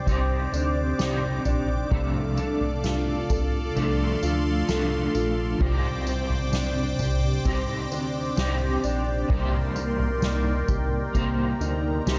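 Dream pop at a slow 65 BPM in C dorian, this short, haunting and melancholic excerpt moves from Cmadd9 to Dm/C and back under a moderate concert-hall reverb and a dark production. A picked electric guitar at the edge of break-up carries tremolo and ensemble chorus, while a clean, fingered guitar plays compressed arpeggios through chorus and tape echo, and a swirling, detuned analog pad holds bright sustained chords with phaser and chorus. Beneath them a glossy, retro synth bass with a plucked, fast attack joins at 0.1 seconds alongside a soft-mallet drum kit of boomy kick, medium-tuned snare, toms and tambourine.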